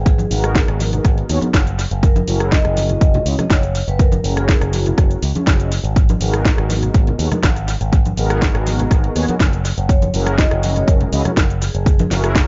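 A punchy, overdriven electronic kick sits up front at 122 BPM in a straight 4/4 nu-disco groove, joined by a house kit whose cracking snare, bright hats, rim clicks and cabasa share the same overdrive and tape echo. Softly played, medium-tuned congas ring in the background, while a picked electric bass with an envelope filter and tube saturation stays bright and forward from the downbeat. Mellow synth brass carries the harmony between G#m7 and F#9, its detuned sawtooth and square tones thickened with chorus, a sub octave, vibrato, 12-bit sampler grit and sidechain pumping. A vibraphone played with soft mallets floats a mellow, metallic melody through tape echo with a slow motor vibrato, dropping out at 5.7 seconds and returning at 9.9. The mood is sensual and cosmic, the mix dry of reverb but heavy with echo and dark up top, in this short cut from a longer piece.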